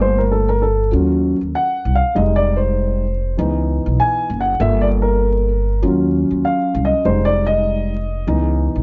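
Jazz-hop with a nocturnal, smoky mood, this 98 BPM excerpt in 4/4 sways on a swung sixteenth-note feel as minor ninth chords cycle from Gm9 through Ebm9, Fm9 and Dbm9. A dark, mellow concert grand piano with a deep low end carries the solo from 0.0 to 8.8 seconds, up front beside a woody, thumpy pizzicato upright bass on gut strings. Light reverb, vinyl crackle, dulled highs and a faint mains hum give the recording its worn, late-night character.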